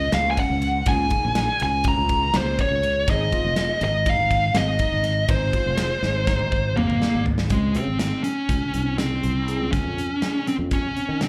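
Heard live through a club PA with roomy reverb, this driving, intricate progressive instrumental in 9/8 puts a fuzzy, distorted lead guitar up front on the melody, treated with plate reverb and slapback echo. A growly fretless bass with lush chorus sits forward beside a gated 80s drum kit with a punchy kick, a medium-tuned snare and bright cymbals. Meanwhile, a clean tine electric piano plays chorused arpeggios in the background, and a dark, very quiet hollow-body archtop guitar accompanies until 7.5 s, just as a drum fill from 6.0 s carries the band into a new section.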